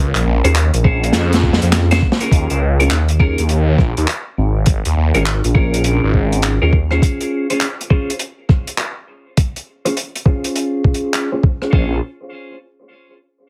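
A very quiet, moody analog pad and a swirling, thick detuned saw bass with phaser and tube saturation open this funky, swaggering glitch hop excerpt at 102 BPM in 4/4 with a swung 16th feel, over a rootless Eb7sus4 drop, as a drum fill leads toward 2.3 seconds. A pitched-down, gritty electronic kick and a small-room acoustic jazz kit of handclaps, hi-hat, rim click and medium-tuned snare drive the groove, while a bright, twangy twelve-string electric guitar plays clean stabs with sidechain pumping, digital delay and a filter sweep. The bass drops out at 7.0 seconds as the harmony moves from Eb7sus4 to Dbmaj7 and then Bbm7, all inside a heavily compressed, radio-like mix with light reverb.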